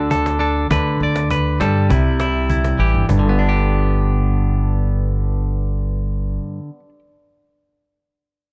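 A straight 4/4 pulse at 101 BPM drives this sunny, danceable highlife guitar band fragment in G major, with a woody cajon carrying the beat until 3.2 s. Up front, a bright, twangy clean electric guitar plays picked, compressed accompaniment through spring reverb over chords moving from D to G/D, C and G, while a dark pizzicato upright bass with steel strings holds the low end until 6.4 s. The cajon has a vintage, band-limited character with faint snares, and the guitar rings on alone to 7.0 s in an otherwise dry sound.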